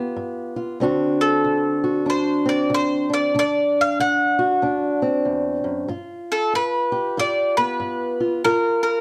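A fingerpicked old ladder-braced acoustic guitar opens this gritty, soulful country blues excerpt alone, its woody, boxy tone and aged strings laying down a swung 94 BPM accompaniment in D mixolydian over G7, D7 and a closing Gm7, until a bowl-back mandolin enters at 1.2 s with a picked, double-string melody bathed in plate reverb, both instruments sitting up front in a small, dark-sounding room.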